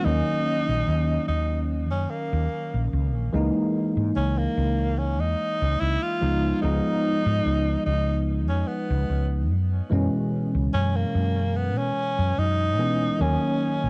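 A tenor saxophone and a bell-like tine electric piano open this nostalgic, melancholic vaporwave fragment, cut from a longer piece, with a woody fretless electric bass joining at 0.1 seconds. The slow, straight 4/4 pulse sits at 73 BPM in C# dorian, tuned slightly flat to A4 = 439 Hz. Played close-miked and up front in a jazz solo style, the saxophone carries the melody with vibrato, a soft attack and scooped notes, trailed by tape echo. The electric piano's clean, direct accompaniment shimmers through analog chorus over a progression that moves from D#m7 through C#m69, C#9 and F#9sus4 before returning to D#m7 at 13.2 seconds. Beneath it, the fretless bass sounds dark, round and hollow-bodied, sitting prominently in the mix. Light reverb, studio ambience and a dulled cassette-tape top end give the whole recording a faded, memory-like haze.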